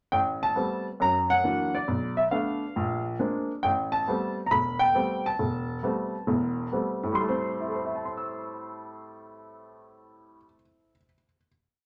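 A woody, up-front upright piano carries this short, smoky solo jazz piece in A minor, swinging at 136 BPM in 4/4 and tuned to A4 = 435 Hz. It builds a motif-based melody in period phrases over a stride bass and close voicings, moving through Am9, F#aug7, Bm7b5 and Bb9 before settling on a sustained Am7 final chord at 7.2 seconds. A wet club reverb gives the present piano a snug, late-night room around it.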